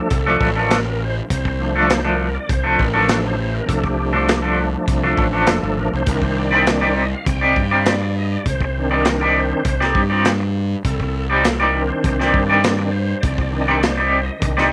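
A reedy, bright tonewheel organ with chorus vibrato, key click and fast rotary speaker opens this mysterious, dark psychedelic rock excerpt at 101 BPM in C dorian, carrying the lead with sustained chords moving from Dm to Cmadd9 at 6.1 seconds, while a clean, twangy, double-tracked electric guitar with tremolo picks a riff, a punchy fuzz bass growls up front, and a gritty, saturated breakbeat kit with a tight kick and rolled-off top thumps in a small room with light reverb.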